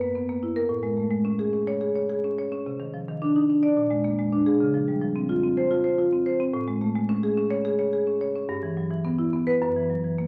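Contemporary classical music for solo marimba, this playful fragment from a longer piece moves at 216 BPM in eighths through a rubato 7/8, drifting through colorful harmonies such as Amaj7, Cmadd9, A#7 and C#maj7 before settling back on F#7. Played with medium hard mallets across a range of F#2 to D5, the rosewood bars sound woody, percussive and boxy, placed up front. A wet recital hall reverb surrounds the instrument, while vinyl crackle adds an aged texture.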